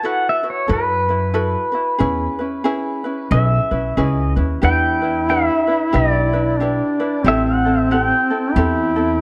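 Sunny and languid, this swung Hawaiian piece sets a clean electric pedal steel guitar melody, played with fingerpicks, slide and volume swells, over light fingerpicked acoustic ukulele, with a woody pizzicato upright bass joining at 0.7 s and a smooth-topped folk duduk adding a second line full of vibrato and scooped notes from 4.6 s as the harmony turns minor, inside a dark, warm production with echo chamber reverb and small room ambience.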